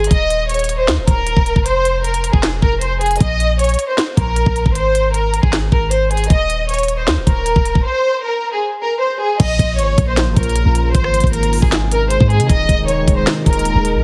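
A half-time trap groove at 155 BPM in 4/4 drives this eerie, menacing hip hop excerpt, built on a knocking kick, sharp snare, crisp hi-hats, rim clicks, handclaps and crash cymbal from an electronic, tape-tinged drum kit sitting up front. Underneath, a clean 808-style bass delivers deep, boomy sine tones with a fast attack and a mellow decay. A studio violin section carries the melody through a low-pass filter, its bowed ensemble tone lush and expressive with vibrato and a soft attack, sounding distant yet forward in the mix. The chords move from Eb5 and F5 figures through Absus2 and Ab before a break at 7.8 seconds, and a new section at 9.4 seconds brings Bbm, Ab and Ebsus4. A dark ambient pad joins at 9.8 seconds, quieter than the other parts, its detuned sawtooth unison with a sub octave swelling in slowly and lingering with chorus and its own reverb. The whole mix has light reverb and a heavily compressed, radio-like sheen.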